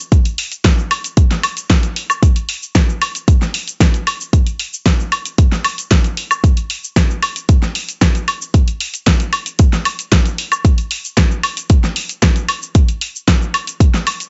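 A punchy electronic kick drum sits up front in this nu-disco piece, running from 0.1 to 13.9 seconds at a straight 114 BPM in 4/4. Alongside it, a pop drum kit of cabasa, hi-hat, woodblock and a fat snare plays from 0.1 seconds until the close at 14.3 seconds, and it sits a little lower in the mix than the kick. Both drum parts are layered, electronic and produced, re-recorded in a small room and placed close to the listener. The sound is dry, with little reverb, and the top end is rolled off above 7.8 kHz. Though it is only a rhythm-section fragment cut from a longer piece, the mood comes across as groovy with a cosmic tinge.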